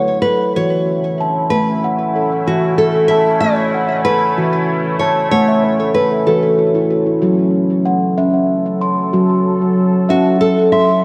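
A round, ringing steel tongue drum sits up front, struck with soft rubber mallets and spinning arpeggios with a delay, and it breaks into a fill at 5.3 seconds. This meditative, hypnotic world piece moves slowly at 63 BPM in dotted quarters in 6/8, drawing on F# minor pentatonic and shifting from A to F# minor at 7.2 seconds. A bright, fingerpicked classical nylon-string guitar carries the melody, also up front with its own delay, then falls away and returns at 10.1 seconds. Underneath, a deep, moody ambient pad holds sustained chords throughout, its detuned, wave-folded tone softened by chorus and slow attack. A lush hall reverb and a worn, warbling cassette-tape pitch drift give this excerpt a hazy, aged quality.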